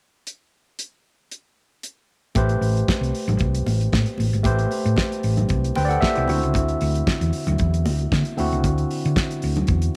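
A damped 70s drum kit opens alone with a fat snare, tight kick and hi-hat, and at 2.4 seconds a round, dark hollow-body electric bass, a barky, lightly overdriven tine electric piano and high-tuned congas in the background join this glamorous, danceable disco cut at 115 BPM in A dorian, moving from Am9 to D9 at 6.3 seconds with a piano fill from 5.5 seconds, all in a small room with light reverb.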